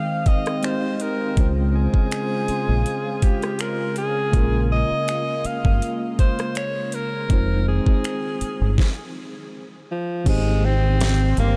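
Contemporary R&B with a longing, sensual mood, where a bright, vibrato-laced alto saxophone with delay carries the melody over mellow tine electric piano, a shimmering chorused pulse-width pad, a smooth produced drum kit with knocking kick, deep snare and finger snaps, and a round, dark fingered bass entering at 1.4 seconds, before a stop at 8.8 seconds and a background downlifter at 10.3 seconds in light reverb.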